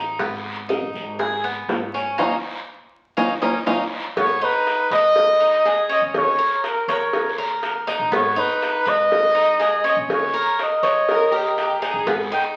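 Bright, metallic picked arpeggios on the Cuban tres and woody, thumpy pizzicato upright bass open this sultry, danceable Cuban son and guajira cut at 122 BPM in G# harmonic minor. They are joined by tight high-tuned bongos and cowbell and a raspy guiro in the background, with a band accent before a breathy, whispered trumpet takes an intimate, up-front solo melody with vibrato from 4.2 seconds. A rich bowed violin section adds a smooth-topped second line at 11.1 seconds, all bathed in large studio reverb and the crackle of a very old 78 rpm record.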